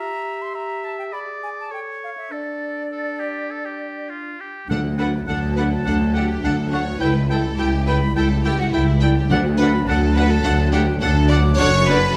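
This excerpt from a quick, dramatic and restless classical-period movement for symphony orchestra opens with woodwinds alone in D minor at 104 BPM in a straight 4/4: a clear oboe, a shadowy, distant clarinet and an airy silver flute weave second lines through the harmonies. At 4.7 s the music turns to D major as the rest of the orchestra enters. The chamber violins carry the melody in the background, with smooth-topped violas as accompaniment, and the mellow French horns hold very quiet sustained chords. Up front, the double basses carry the bass line with a soft attack and expressive portamento, alongside distant cellos. Round, softly struck timpani mark the D at 4.7 s and again at 9.3 s, while a lush studio violin section adds a vibrato-rich second line from 5.0 s, all set in a reverberant stone room.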